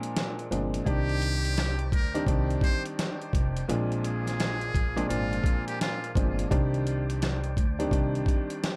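Gritty and tough, this dark boom-bap hip-hop excerpt in C minor swings at 85 BPM. A compressed sampler-style drum kit with a thumpy kick, snare, rim click and hi-hat sits up front from the start beside a slightly detuned, woody upright piano. A pizzicato gut-string upright bass enters at 0.5 seconds. A buzzy, brilliant metal-muted trumpet carries a jazz-style solo melody through tape echo from 0.9 to 6.1 seconds. A fat, lightly overdriven tonewheel organ with key click and fast rotary speaker holds chords in the background over a Bb7 to Cmadd9 progression, in a dry mix.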